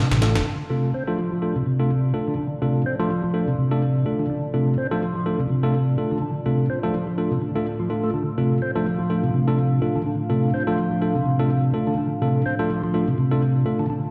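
This short cut from a longer breakbeat piece opens at 0.0 s with a brief break, as a gritty, pitched-up sampler-style drum kit flashes hi-hat and snare for barely half a second before falling away. A mellow, round tonewheel organ carries the riff throughout, its percussive third-harmonic attack passed through a slow rotary speaker, a low-pass filter and tape echo, and it sits up front in the mix. From 0.2 s a worn, slightly out-of-tune tine electric piano adds stabs, also filtered and echoed, sounding direct and close. At 1.2 s a deep, moody analog pad fades in on sustained chords, its detuned sawtooth and sub-octave body shimmering through chorus and phaser. The groove runs at 125 BPM in 4/4 with a light 16th-note swing, settling on D minor for an energetic, funky feel. A lush hall reverb and the sound of a big sound system in a bare room give the whole mix a large, roomy space.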